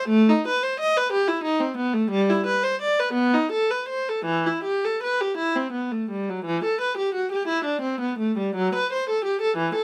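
Closely miked and finely detailed, this recording places a lone viola up front in a light reverb. The baroque-style suite movement in E minor unfolds in a lilting 6/8 at roughly 51-61 BPM, its rubato giving the dance-like line a serene, unhurried feel. One player's bowed tone is clear, smooth and even, coloured by vibrato and ranging from E3 to D#5, with a new section arriving at 6.5 seconds before the fragment breaks off at 9.8 seconds.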